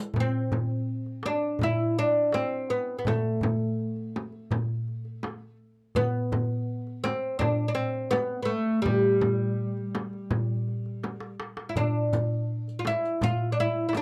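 A compressed, saturated clay-shell darbuka played with soft hands opens this soulful, hypnotic Arabic maqam ensemble excerpt in a straight 4/4. It is joined almost at once by an up-front, woody fretless oud plucked with a plectrum across its double strings, and by a deep, large frame drum heard close and dry. After a drum fill from 11.0 to 11.8 seconds, a bright-jingled riq slips in behind the others, all set in a modest small room on a close 1970s-style studio recording.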